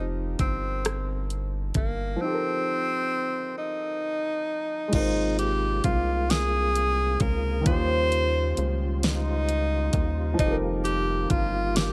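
A yearning, sultry slow six-eight R&B excerpt at 44 BPM, where a breathy tenor saxophone with light vibrato and scooped notes carries the melody up front over a natural grand piano and a rubbery, hollow square bass with a resonant filter pluck. A produced electronic drum kit with a knocking kick and fat snare comes in at 0.4 seconds, drops out from 2.2 to 4.9 seconds, and returns as a clean tonewheel organ with key click, chorus vibrato and a slow rotary speaker enters in the background. The harmony moves through F9sus4, Ab69 and Eb13 before coming back to F9sus4, in a dry, close-sounding room.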